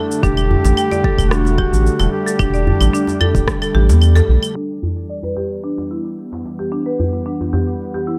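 A straight 4/4 groove of overdriven electronic kick, tape-warm shaker, claves and rim click, and a hard-handed djembe carries this mystical organic downtempo piece cut from a longer work, where a mellow, folk-style solo duduk with tape echo sings until 4.0 s over a round, dark analog bass with sidechain pumping that holds on until 4.4 s, while a detuned, warbling analog pad in lush chorus and a bright, woody marimba playing arpeggios with hard mallets, both bathed in shimmer reverb, pass through a filter sweep from 4.6 s as the harmony moves from Dsus4 to Em7.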